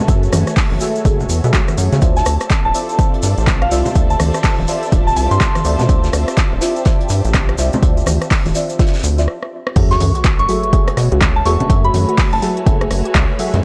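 A rubbery, bouncy square bass sits up front with tube saturation and sidechain pumping, driving this smooth, deep house cut at 124 BPM with a swung 16th feel, alongside a punchy electronic kick, a layered kit of smooth hats, claps, rim clicks and crash, a damped, thuddy acoustic kit, low-tuned congas and a grainy egg shaker. Over F#m9 and Dm9 chords, a soft, dark chord stab with chorus, phaser and analog delay pumps against silky string-machine pads, a lush bowed violin section and a very quiet clear string ensemble, while a pure FM bell plays melody from 2.2 seconds. After a drum fill and stop, the drop at 9.8 seconds brings a very quiet sub drop, the bell's return and a warbly, lo-fi pluck arpeggio, all set in a dry, gritty small room with transformer saturation.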